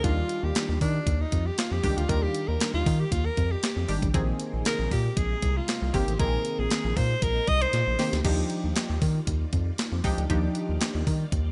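Early-eighties boogie funk with a smooth, feel-good mood, built on an up-front, rubbery square-wave bass, a clean 12-bit drum machine with a thumpy kick and handclaps, and a punchy, chorused polysynth comp, with a very quiet, swirling phased string machine beneath. A breathy alto saxophone takes a jazz-style solo with vibrato and scooped notes until 8.3 seconds, just after a drum fill, leaving the groove to carry on. The sound is a rough home demo with light reverb and a dark, lo-fi top end.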